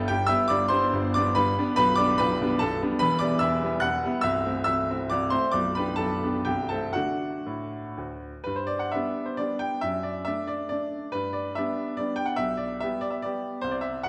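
Rustic and proud, this short passage from a longer classical piece is a romantic dance in triple time with dotted rhythms, moving with a flexible, rubato feel. A solo baby grand piano carries it throughout, its tone brilliant and open and sitting up front, ranging from deep bass to high treble, while a wet recital hall reverb and a dark overall production surround it. At 8.5 seconds the music moves into a new section that settles on plain, sturdy harmonies.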